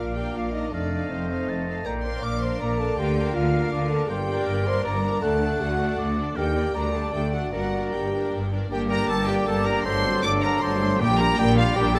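A focused cello section and a distant double bass section carry the bass of this stormy, restless excerpt from a fast romantic orchestral movement in 3/4 at 159 BPM, played with a rubato feel. Above them a lush symphonic violin section sings the high melody with vibrato, while a closer studio violin section, a bright, vintage-toned clarinet, a pure silver flute set further back and a smooth oboe weave second lines around it. A mellow, distant bassoon and a background viola section fill in the accompaniment as a dark, roomy French horn section sustains chords. The music opens in Bb major and turns to G minor at 4.1 s, moving through chords such as Ebmaj7 and D. At 8.7 s a tight, very quiet trombone section adds sustained chords and a close-miked trumpet jabs out stabs, and a soft timpani stroke on calf heads lands at 11.0 s, all within the moderate reverb of a scoring stage.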